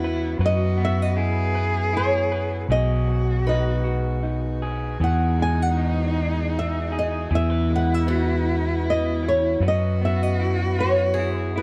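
A hopeful, tender acoustic folk-pop ballad in 3/4 at 78 BPM opens on a round, up-front fretless bass, a bowed cello second line with vibrato and portamento, a slightly broken-up lo-fi electric guitar through a small old amp, woody, boxy swing-style acoustic guitar arpeggios, and a reedy chamber string section holding gut-string chords in the background. At 0.5 s a fingerpicked flamenco guitar takes the melody. The chords move from F#7sus4 through B6, Emaj7 and C#m7/E back to F#7sus4 in a dark, dry, warm production, in a passage cut from a longer piece.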